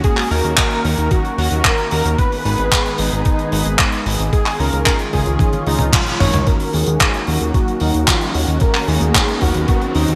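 Melodramatic and danceable, this italo disco excerpt moves at 112 BPM in Eb minor. A bold, nasal, warbling sawtooth unison lead with vibrato and digital delay carries the melody over an airy, detuned pad with chorus and phaser, glossy pulse-wave polysynth stabs in the background, and a fat, evolving analog bass with a filter sweep up front. A thumpy electronic kick and a dry, mid-forward 70s kit of handclaps, hi-hat and toms with gated reverb drive the groove, with a drum fill at 5.4 seconds and a band accent at 5.9 seconds before a very quiet riser enters at 7.7 seconds, all set in a lush hall and bright 1980s-style digital production.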